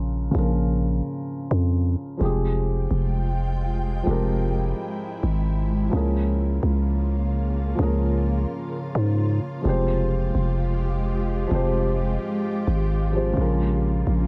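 Set in a small, lightly reverberant room, this menacing, melancholic hip hop fragment in F harmonic minor moves at 129 BPM with a half-time feel. It is built on a dark, boxy concert grand piano with audible action noise and a low-pass filter and an up-front growling, buzzy 808-style bass. From 3.0 s, an ethereal, airy pad with ensemble chorus and built-in reverb sustains chords over a progression that moves from Bbm through Fmadd9 and Db6 before returning via Fmadd9 to Bbm.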